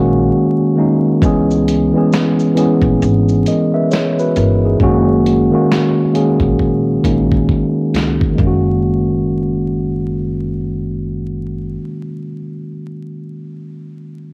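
A laid-back 4/4 groove at 67 BPM sways with a 62% swing on the sixteenths, setting a dreamy, cosy lo-fi hip hop mood in F# mixolydian, tuned slightly flat to A4 = 438 Hz. A mellow tine electric piano sits up front, playing clean, direct chords from F#69 to C#m7 and back, softened by cassette tape and a low-pass filter. Beneath it, a woody pizzicato upright bass with steel strings holds the low end. After a brief silent gap, a dusty soul sampler-style kit arrives from 1.2 to 8.6 seconds, its compressed, gritty 12-bit hits bringing a thumpy kick, a medium-tuned snare, hi-hat and shaker with the sound of a large room, and a drum fill starting at 6.6 seconds. The whole cut is dry and intimate, carrying the character of a home cassette recording and a layer of vinyl crackle, and it is taken from a longer piece.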